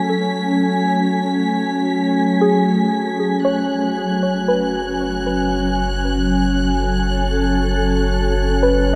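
A glassy, ethereal FM pad sits up front holding sustained F# minor chords with ensemble chorus, while a soft, round pluck traces gentle arpeggios through chorus and delay, an evolving, resonant analog drone hums in the background, a rich chamber violin section adds smooth, bowed texture high above, and a deep, mellow analog bass enters at 3.4 s, the whole reflective, spacious ambient excerpt moving at a slow 58 BPM in 3/4 within a vast, echoing cathedral reverb.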